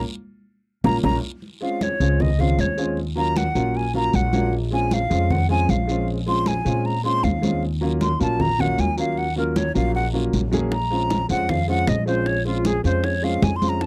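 A straight 4/4 groove at 155 BPM drives this fiery, sultry Afro-Cuban jazz excerpt in Bb minor, where woody, growly pizzicato upright bass and a smooth, vintage-toned grand piano sit up front with congas in the background and a raspy guiro, while round, low-tuned bongos strike only at the opening band accent and return at 10.7 seconds. From 1.4 seconds a breathy, expressive silver flute takes a tongued, straight-toned solo over chords moving from Dbmaj9 through Ebm9 and Bbm9. The sound is a dry, close 1970s-style studio recording with little reverb.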